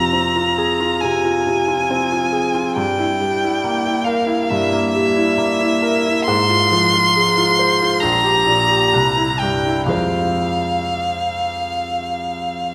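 Solemn and yearning, this romantic classical excerpt for violin and grand piano unfolds in F minor at a rubato 57-71 BPM, the single bowed violin carrying a smooth, even, rich melody with vibrato while the bright, open piano accompaniment rings with long sustain, both up front in a wet concert hall reverb, moving from Fm through Edim/G and C7 before settling back on Fm at 9.9 seconds.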